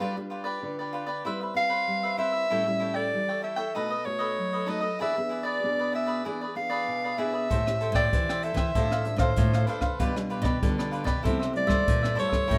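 Yearning yet lively, this samba and choro excerpt in A minor moves at 96 BPM, with a soprano saxophone up front carrying the melody in a warm, smooth jazz style, its soft attack shaded with vibrato. A bright, crisply picked cavaquinho and a fingerpicked classical nylon-string guitar accompany from the start, and at 7.5 seconds a thumb-plucked nylon-string guitar with fresh strings enters on the bass alongside a dark brush drum kit with a punchy kick, hi-hat and rim click. A moderate large-studio reverb surrounds the ensemble as the harmony passes through dominant-seventh colours before settling toward Am7 and a closing C6.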